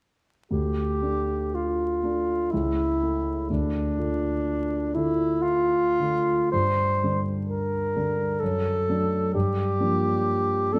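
In a rubato triple metre, this solemn, yearning romantic classical duo, cut from a longer piece, sets a clear alto saxophone singing the solo melody with light vibrato in classical style over a dark, mellow concert grand piano whose deep bass anchors the accompaniment, both up front from 0.5 seconds and framed by the wet reverb of a recital hall and a layer of vinyl crackle.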